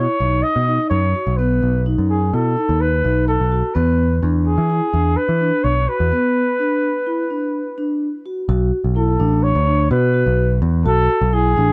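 A dark, vibrato-laden trumpet opens this brooding excerpt of progressive instrumental band music, joined from the first moment by vibraphone arpeggios and a picked electric bass, all moving in an uneven 5/4 with a straight, tense feel. The trumpet carries the melody as a jazz-style solo, its scooped notes sitting up front yet sounding distant and roomy. Beneath it, the vibraphone, struck with soft mallets and its motor off, rings with a mellow metallic glow, close-miked and full. The bass is direct and amped, sitting up front with a warm electric tone, while the harmony shifts from B7 to Bm and then settles on Bm7 as a new section begins at 8.5 s, following a break that starts at 6.1 s. The whole recording has the dry, close character of a 1970s studio session in a small room.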